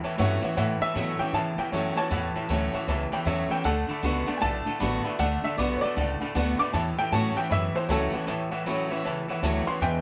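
A rollicking, rowdy rockabilly passage in A mixolydian opens at 156 BPM with a swung 4/4 feel: a thumpy, pizzicato upright bass, a twangy, slightly broken-up electric guitar riff through a small old amp, a bright, full-bodied picked acoustic guitar and a smooth, vintage-sounding upright piano all drive the A6 to D6 changes. At 0.8 seconds a second upright piano takes the melody, its warm, woody, slightly detuned tone and short sustain sitting over the band. Light reverb gives the feel of a group playing live together in one room.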